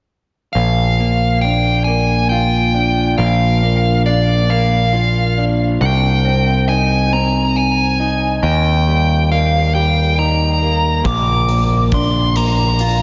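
A dark, overdriven lead guitar sings a melody from 0.5 seconds in this hopeful, euphoric post-rock passage at 46 BPM in 6/8, joined almost at once by picked arpeggios from a slightly broken-up, lo-fi guitar with subtle chorus and a growling, bright overdriven bass up front, both guitars trailing diffuse ambient delay through a dreamy, reverb-soaked hall over a Bb, Cm, Eb and Bb progression, until a huge arena drum kit with a punchy kick and hi-hat arrives at 11.1 seconds.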